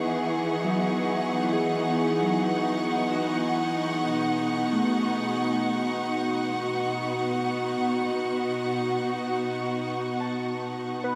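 Sustained string-section chords open this luminous, serene ambient passage at 57 BPM in 4/4, bowed sul tasto with a soft attack and light vibrato, sitting close and up front. Behind them a distant violin section holds a single high C#6 with expressive, lush vibrato. From 0.6 s a fingerpicked Celtic harp adds ringing arpeggios in the background, touched with tape echo. The harmony moves from Emaj7 to B at 4.2 s, all soaked in a huge, dreamy reverb. The passage fades out from 9.8 s, and at 11.0 s a velvety, dark synth lead sounds a single B4 with chorus and tremolo just before this excerpt is cut from the longer piece.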